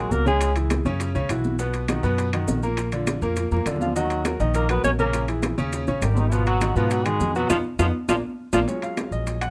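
Afro-Cuban jazz, fiery and driving at 203 BPM in Eb minor: a breathy, subtoned alto saxophone carries the melody with scooped notes over a buzzy, metal-muted trombone second line, both sounding briefly at the start and returning at 3.8 seconds, while a bright upright piano and an up-front, thumpy pizzicato upright bass drive beneath congas, timbales, bongos, maracas and claves, with drum fills around 3.4 and 7.5 seconds and a band accent near the close of this fragment cut from a longer piece, captured with close, detailed microphones and light reverb.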